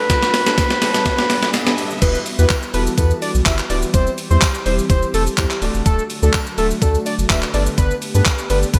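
Dance-pop with an energetic, confident drive, this piece opens on a short build-up where a reedy, band-limited accordion plays a brief melody that stops at 1.5 seconds. Beneath it sit a dark, mellow baby grand piano that adds a fill, an airy, breathy pad, and an electronic riser in the background. A gated 80s digital drum machine plays a drum fill through the build-up, its thumpy kick and gated-reverb snare sitting up front alongside handclaps, hi-hat, shaker and crash cymbal, while a close, jingly tambourine stays very quiet underneath. The drop lands at 2.0 seconds, bringing in a round sine sub bass and a fat, nasal analog lead of sawtooth and square waves with vibrato, both pumping with sidechain alongside the piano and pad. The harmony moves from Gadd9 through Emadd9, C/E and D before returning to Gadd9, with the piano shimmering in lush chorus and the detuned pad warbling behind. The bright 1980s-style digital production sits in light reverb and digital ambience, and this cut is taken from a longer track.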